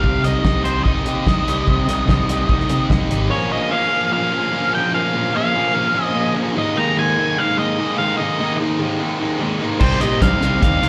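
Bittersweet and restless, this indie rock excerpt comes from a live club gig heard through the venue's PA with club reverb. A bright, double-tracked fuzz guitar riff sits up front beneath a dark, distorted octave-fuzz lead melody with slapback echo. A round, overdriven fingered bass and a cloth-damped, thuddy drum kit with a fat snare, tight kick and rolled-off top drive the opening, drop out after about 3.2 seconds so the two guitars carry the passage alone, then return at 9.8 seconds.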